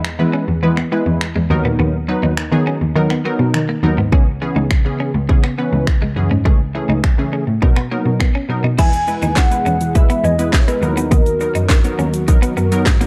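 A straight 4/4 house groove at 103 BPM, with punchy kick, cracking snare, handclaps, finger snaps, hi-hat, shaker and crash up front, drives this summery, upbeat dance-pop excerpt in B major, where a clear, bowed cello carries the pumping bass line, a funky, detuned polysynth comps with chorus, and a bright, twangy clean electric guitar plays a lush-chorused riff, until at 8.8 s a velvety synth lead with tape echo takes the melody over an airy, breathy pad and a very quiet, tight sequenced synth arpeggio, all in a dark production with light digital reverb.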